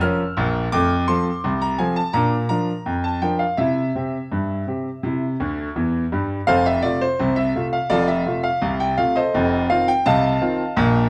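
A clear, up-front concert grand piano plays solo in this jaunty, lively ragtime excerpt in a straight 2/4, its open tone reaching into deep bass as the harmony moves from Bbm and F through Bb and C, with a piano fill at 5.4 seconds just before a new section at 6.5 seconds that settles on F and then F7, set in a moderate studio reverb with the feel of live playing in one room.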